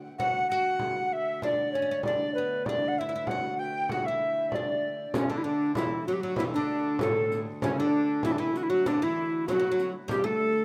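Rustic and festive, this short cut from a longer medieval dance moves at 97 BPM in a straight 2/4 in D major. A warm viola da gamba sustains a low D drone in the background, its airy bow and boxy, intimate tone ringing from the very start. From 0.2 seconds a mellow tenor recorder carries the melody up front, tongued with a breathy chiff and vibrato, its rolled-off highs trailed by tape echo. A second tenor recorder, brighter and reedy with a straight tone, sits farther back on a supporting line, joined by a plectrum-plucked fretless oud whose double strings give it a deep, woody sound. A small, distant frame drum keeps the pulse, and at 5.1 seconds, as the second section begins, a very quiet riq adds bright jingles from the same large-room distance. The whole has light reverb and small-room ambience with the rough feel of a home demo.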